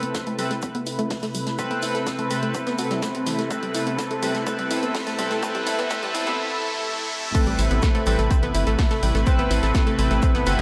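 Melodic techno in a cinematic, dramatic mood, this reverb-soaked excerpt builds with a lush detuned pad, a round analog pluck, an edgy nasal-sweeping polysynth, an overdriven drum machine, a soft brush kit and a punchy up-front kick, a very quiet riser rising from 3.1 s, until the drop at 7.3 s brings in a tight, driving sequencer bass.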